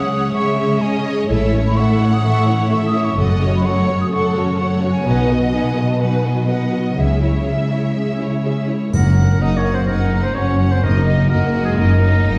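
This triumphant, soaring heroic adventure score excerpt opens with lush bowed violins carrying a focused, vibrato-rich melody over a second violin line, joined by a pure, hollow flute line, expressive violas with portamento, ringing thumb-plucked harp arpeggios and a soft-attack cello bass, with a rich, even double bass section entering at 1.3 s. After the flute drops out, a distant solo oboe arrives at 8.9 s alongside round, very quiet timpani played with soft mallets and a bright triangle in the background. The orchestra sits further back in a wet scoring-stage reverb, lending the cut a grand, cinematic sheen.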